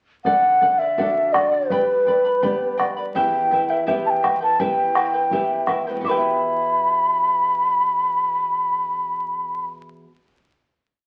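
Andean folk played by a small Andean ensemble, this brief, complete piece sits in E minor at 83 BPM in a straight 2/4, with a wistful, melancholic mood. A large quena carries the melody up front, its airy, hollow wooden tone shaped by vibrato and soft attacks as it states short motifs in period phrases between B4 and D6. Beneath it, a charango adds a bright, shimmering layer from its double strings, some doubled at the octave, mixing fingerpicking with rhythmic strumming on open chord shapes. A flamenco guitar supplies the pulse with fingerpicked bass notes and chord figures, while a deep, dark bombo repeats a band-limited pattern until 6.4 seconds. The harmony moves from D to G to E minor before the ensemble settles on a final chord from 6.0 seconds, with the quena dropping out at 9.7 seconds. A wet studio reverb surrounds the players, and the whole piece carries the crackle and aged character of a very old 78 rpm record.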